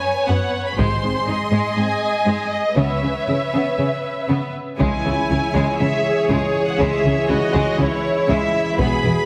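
Heavily compressed, radio-style sound sits in a moderate scoring-stage reverb, giving this cinematic orchestral film-score fragment a dense, heroic and dramatic character in C# minor at 120 BPM in a straight 4/4. Lush, rich-toned violins carry the melody with a distant, even vibrato, while a second violin section plays a focused, warm second line and the violas fill in an intense, bowed accompaniment. Underneath, a smooth cello section and a clear double bass section hold the bass, and distant taiko drums played with hard sticks resound as if in a large room, first striking at 0.8 s. At 4.8 s a mellow, close-miked French horn section adds sustained chords in a classical style. The harmony moves from F#sus4 to G# and C#m7 before settling on C# minor, and the fragment is cut from a longer piece at 9.3 s.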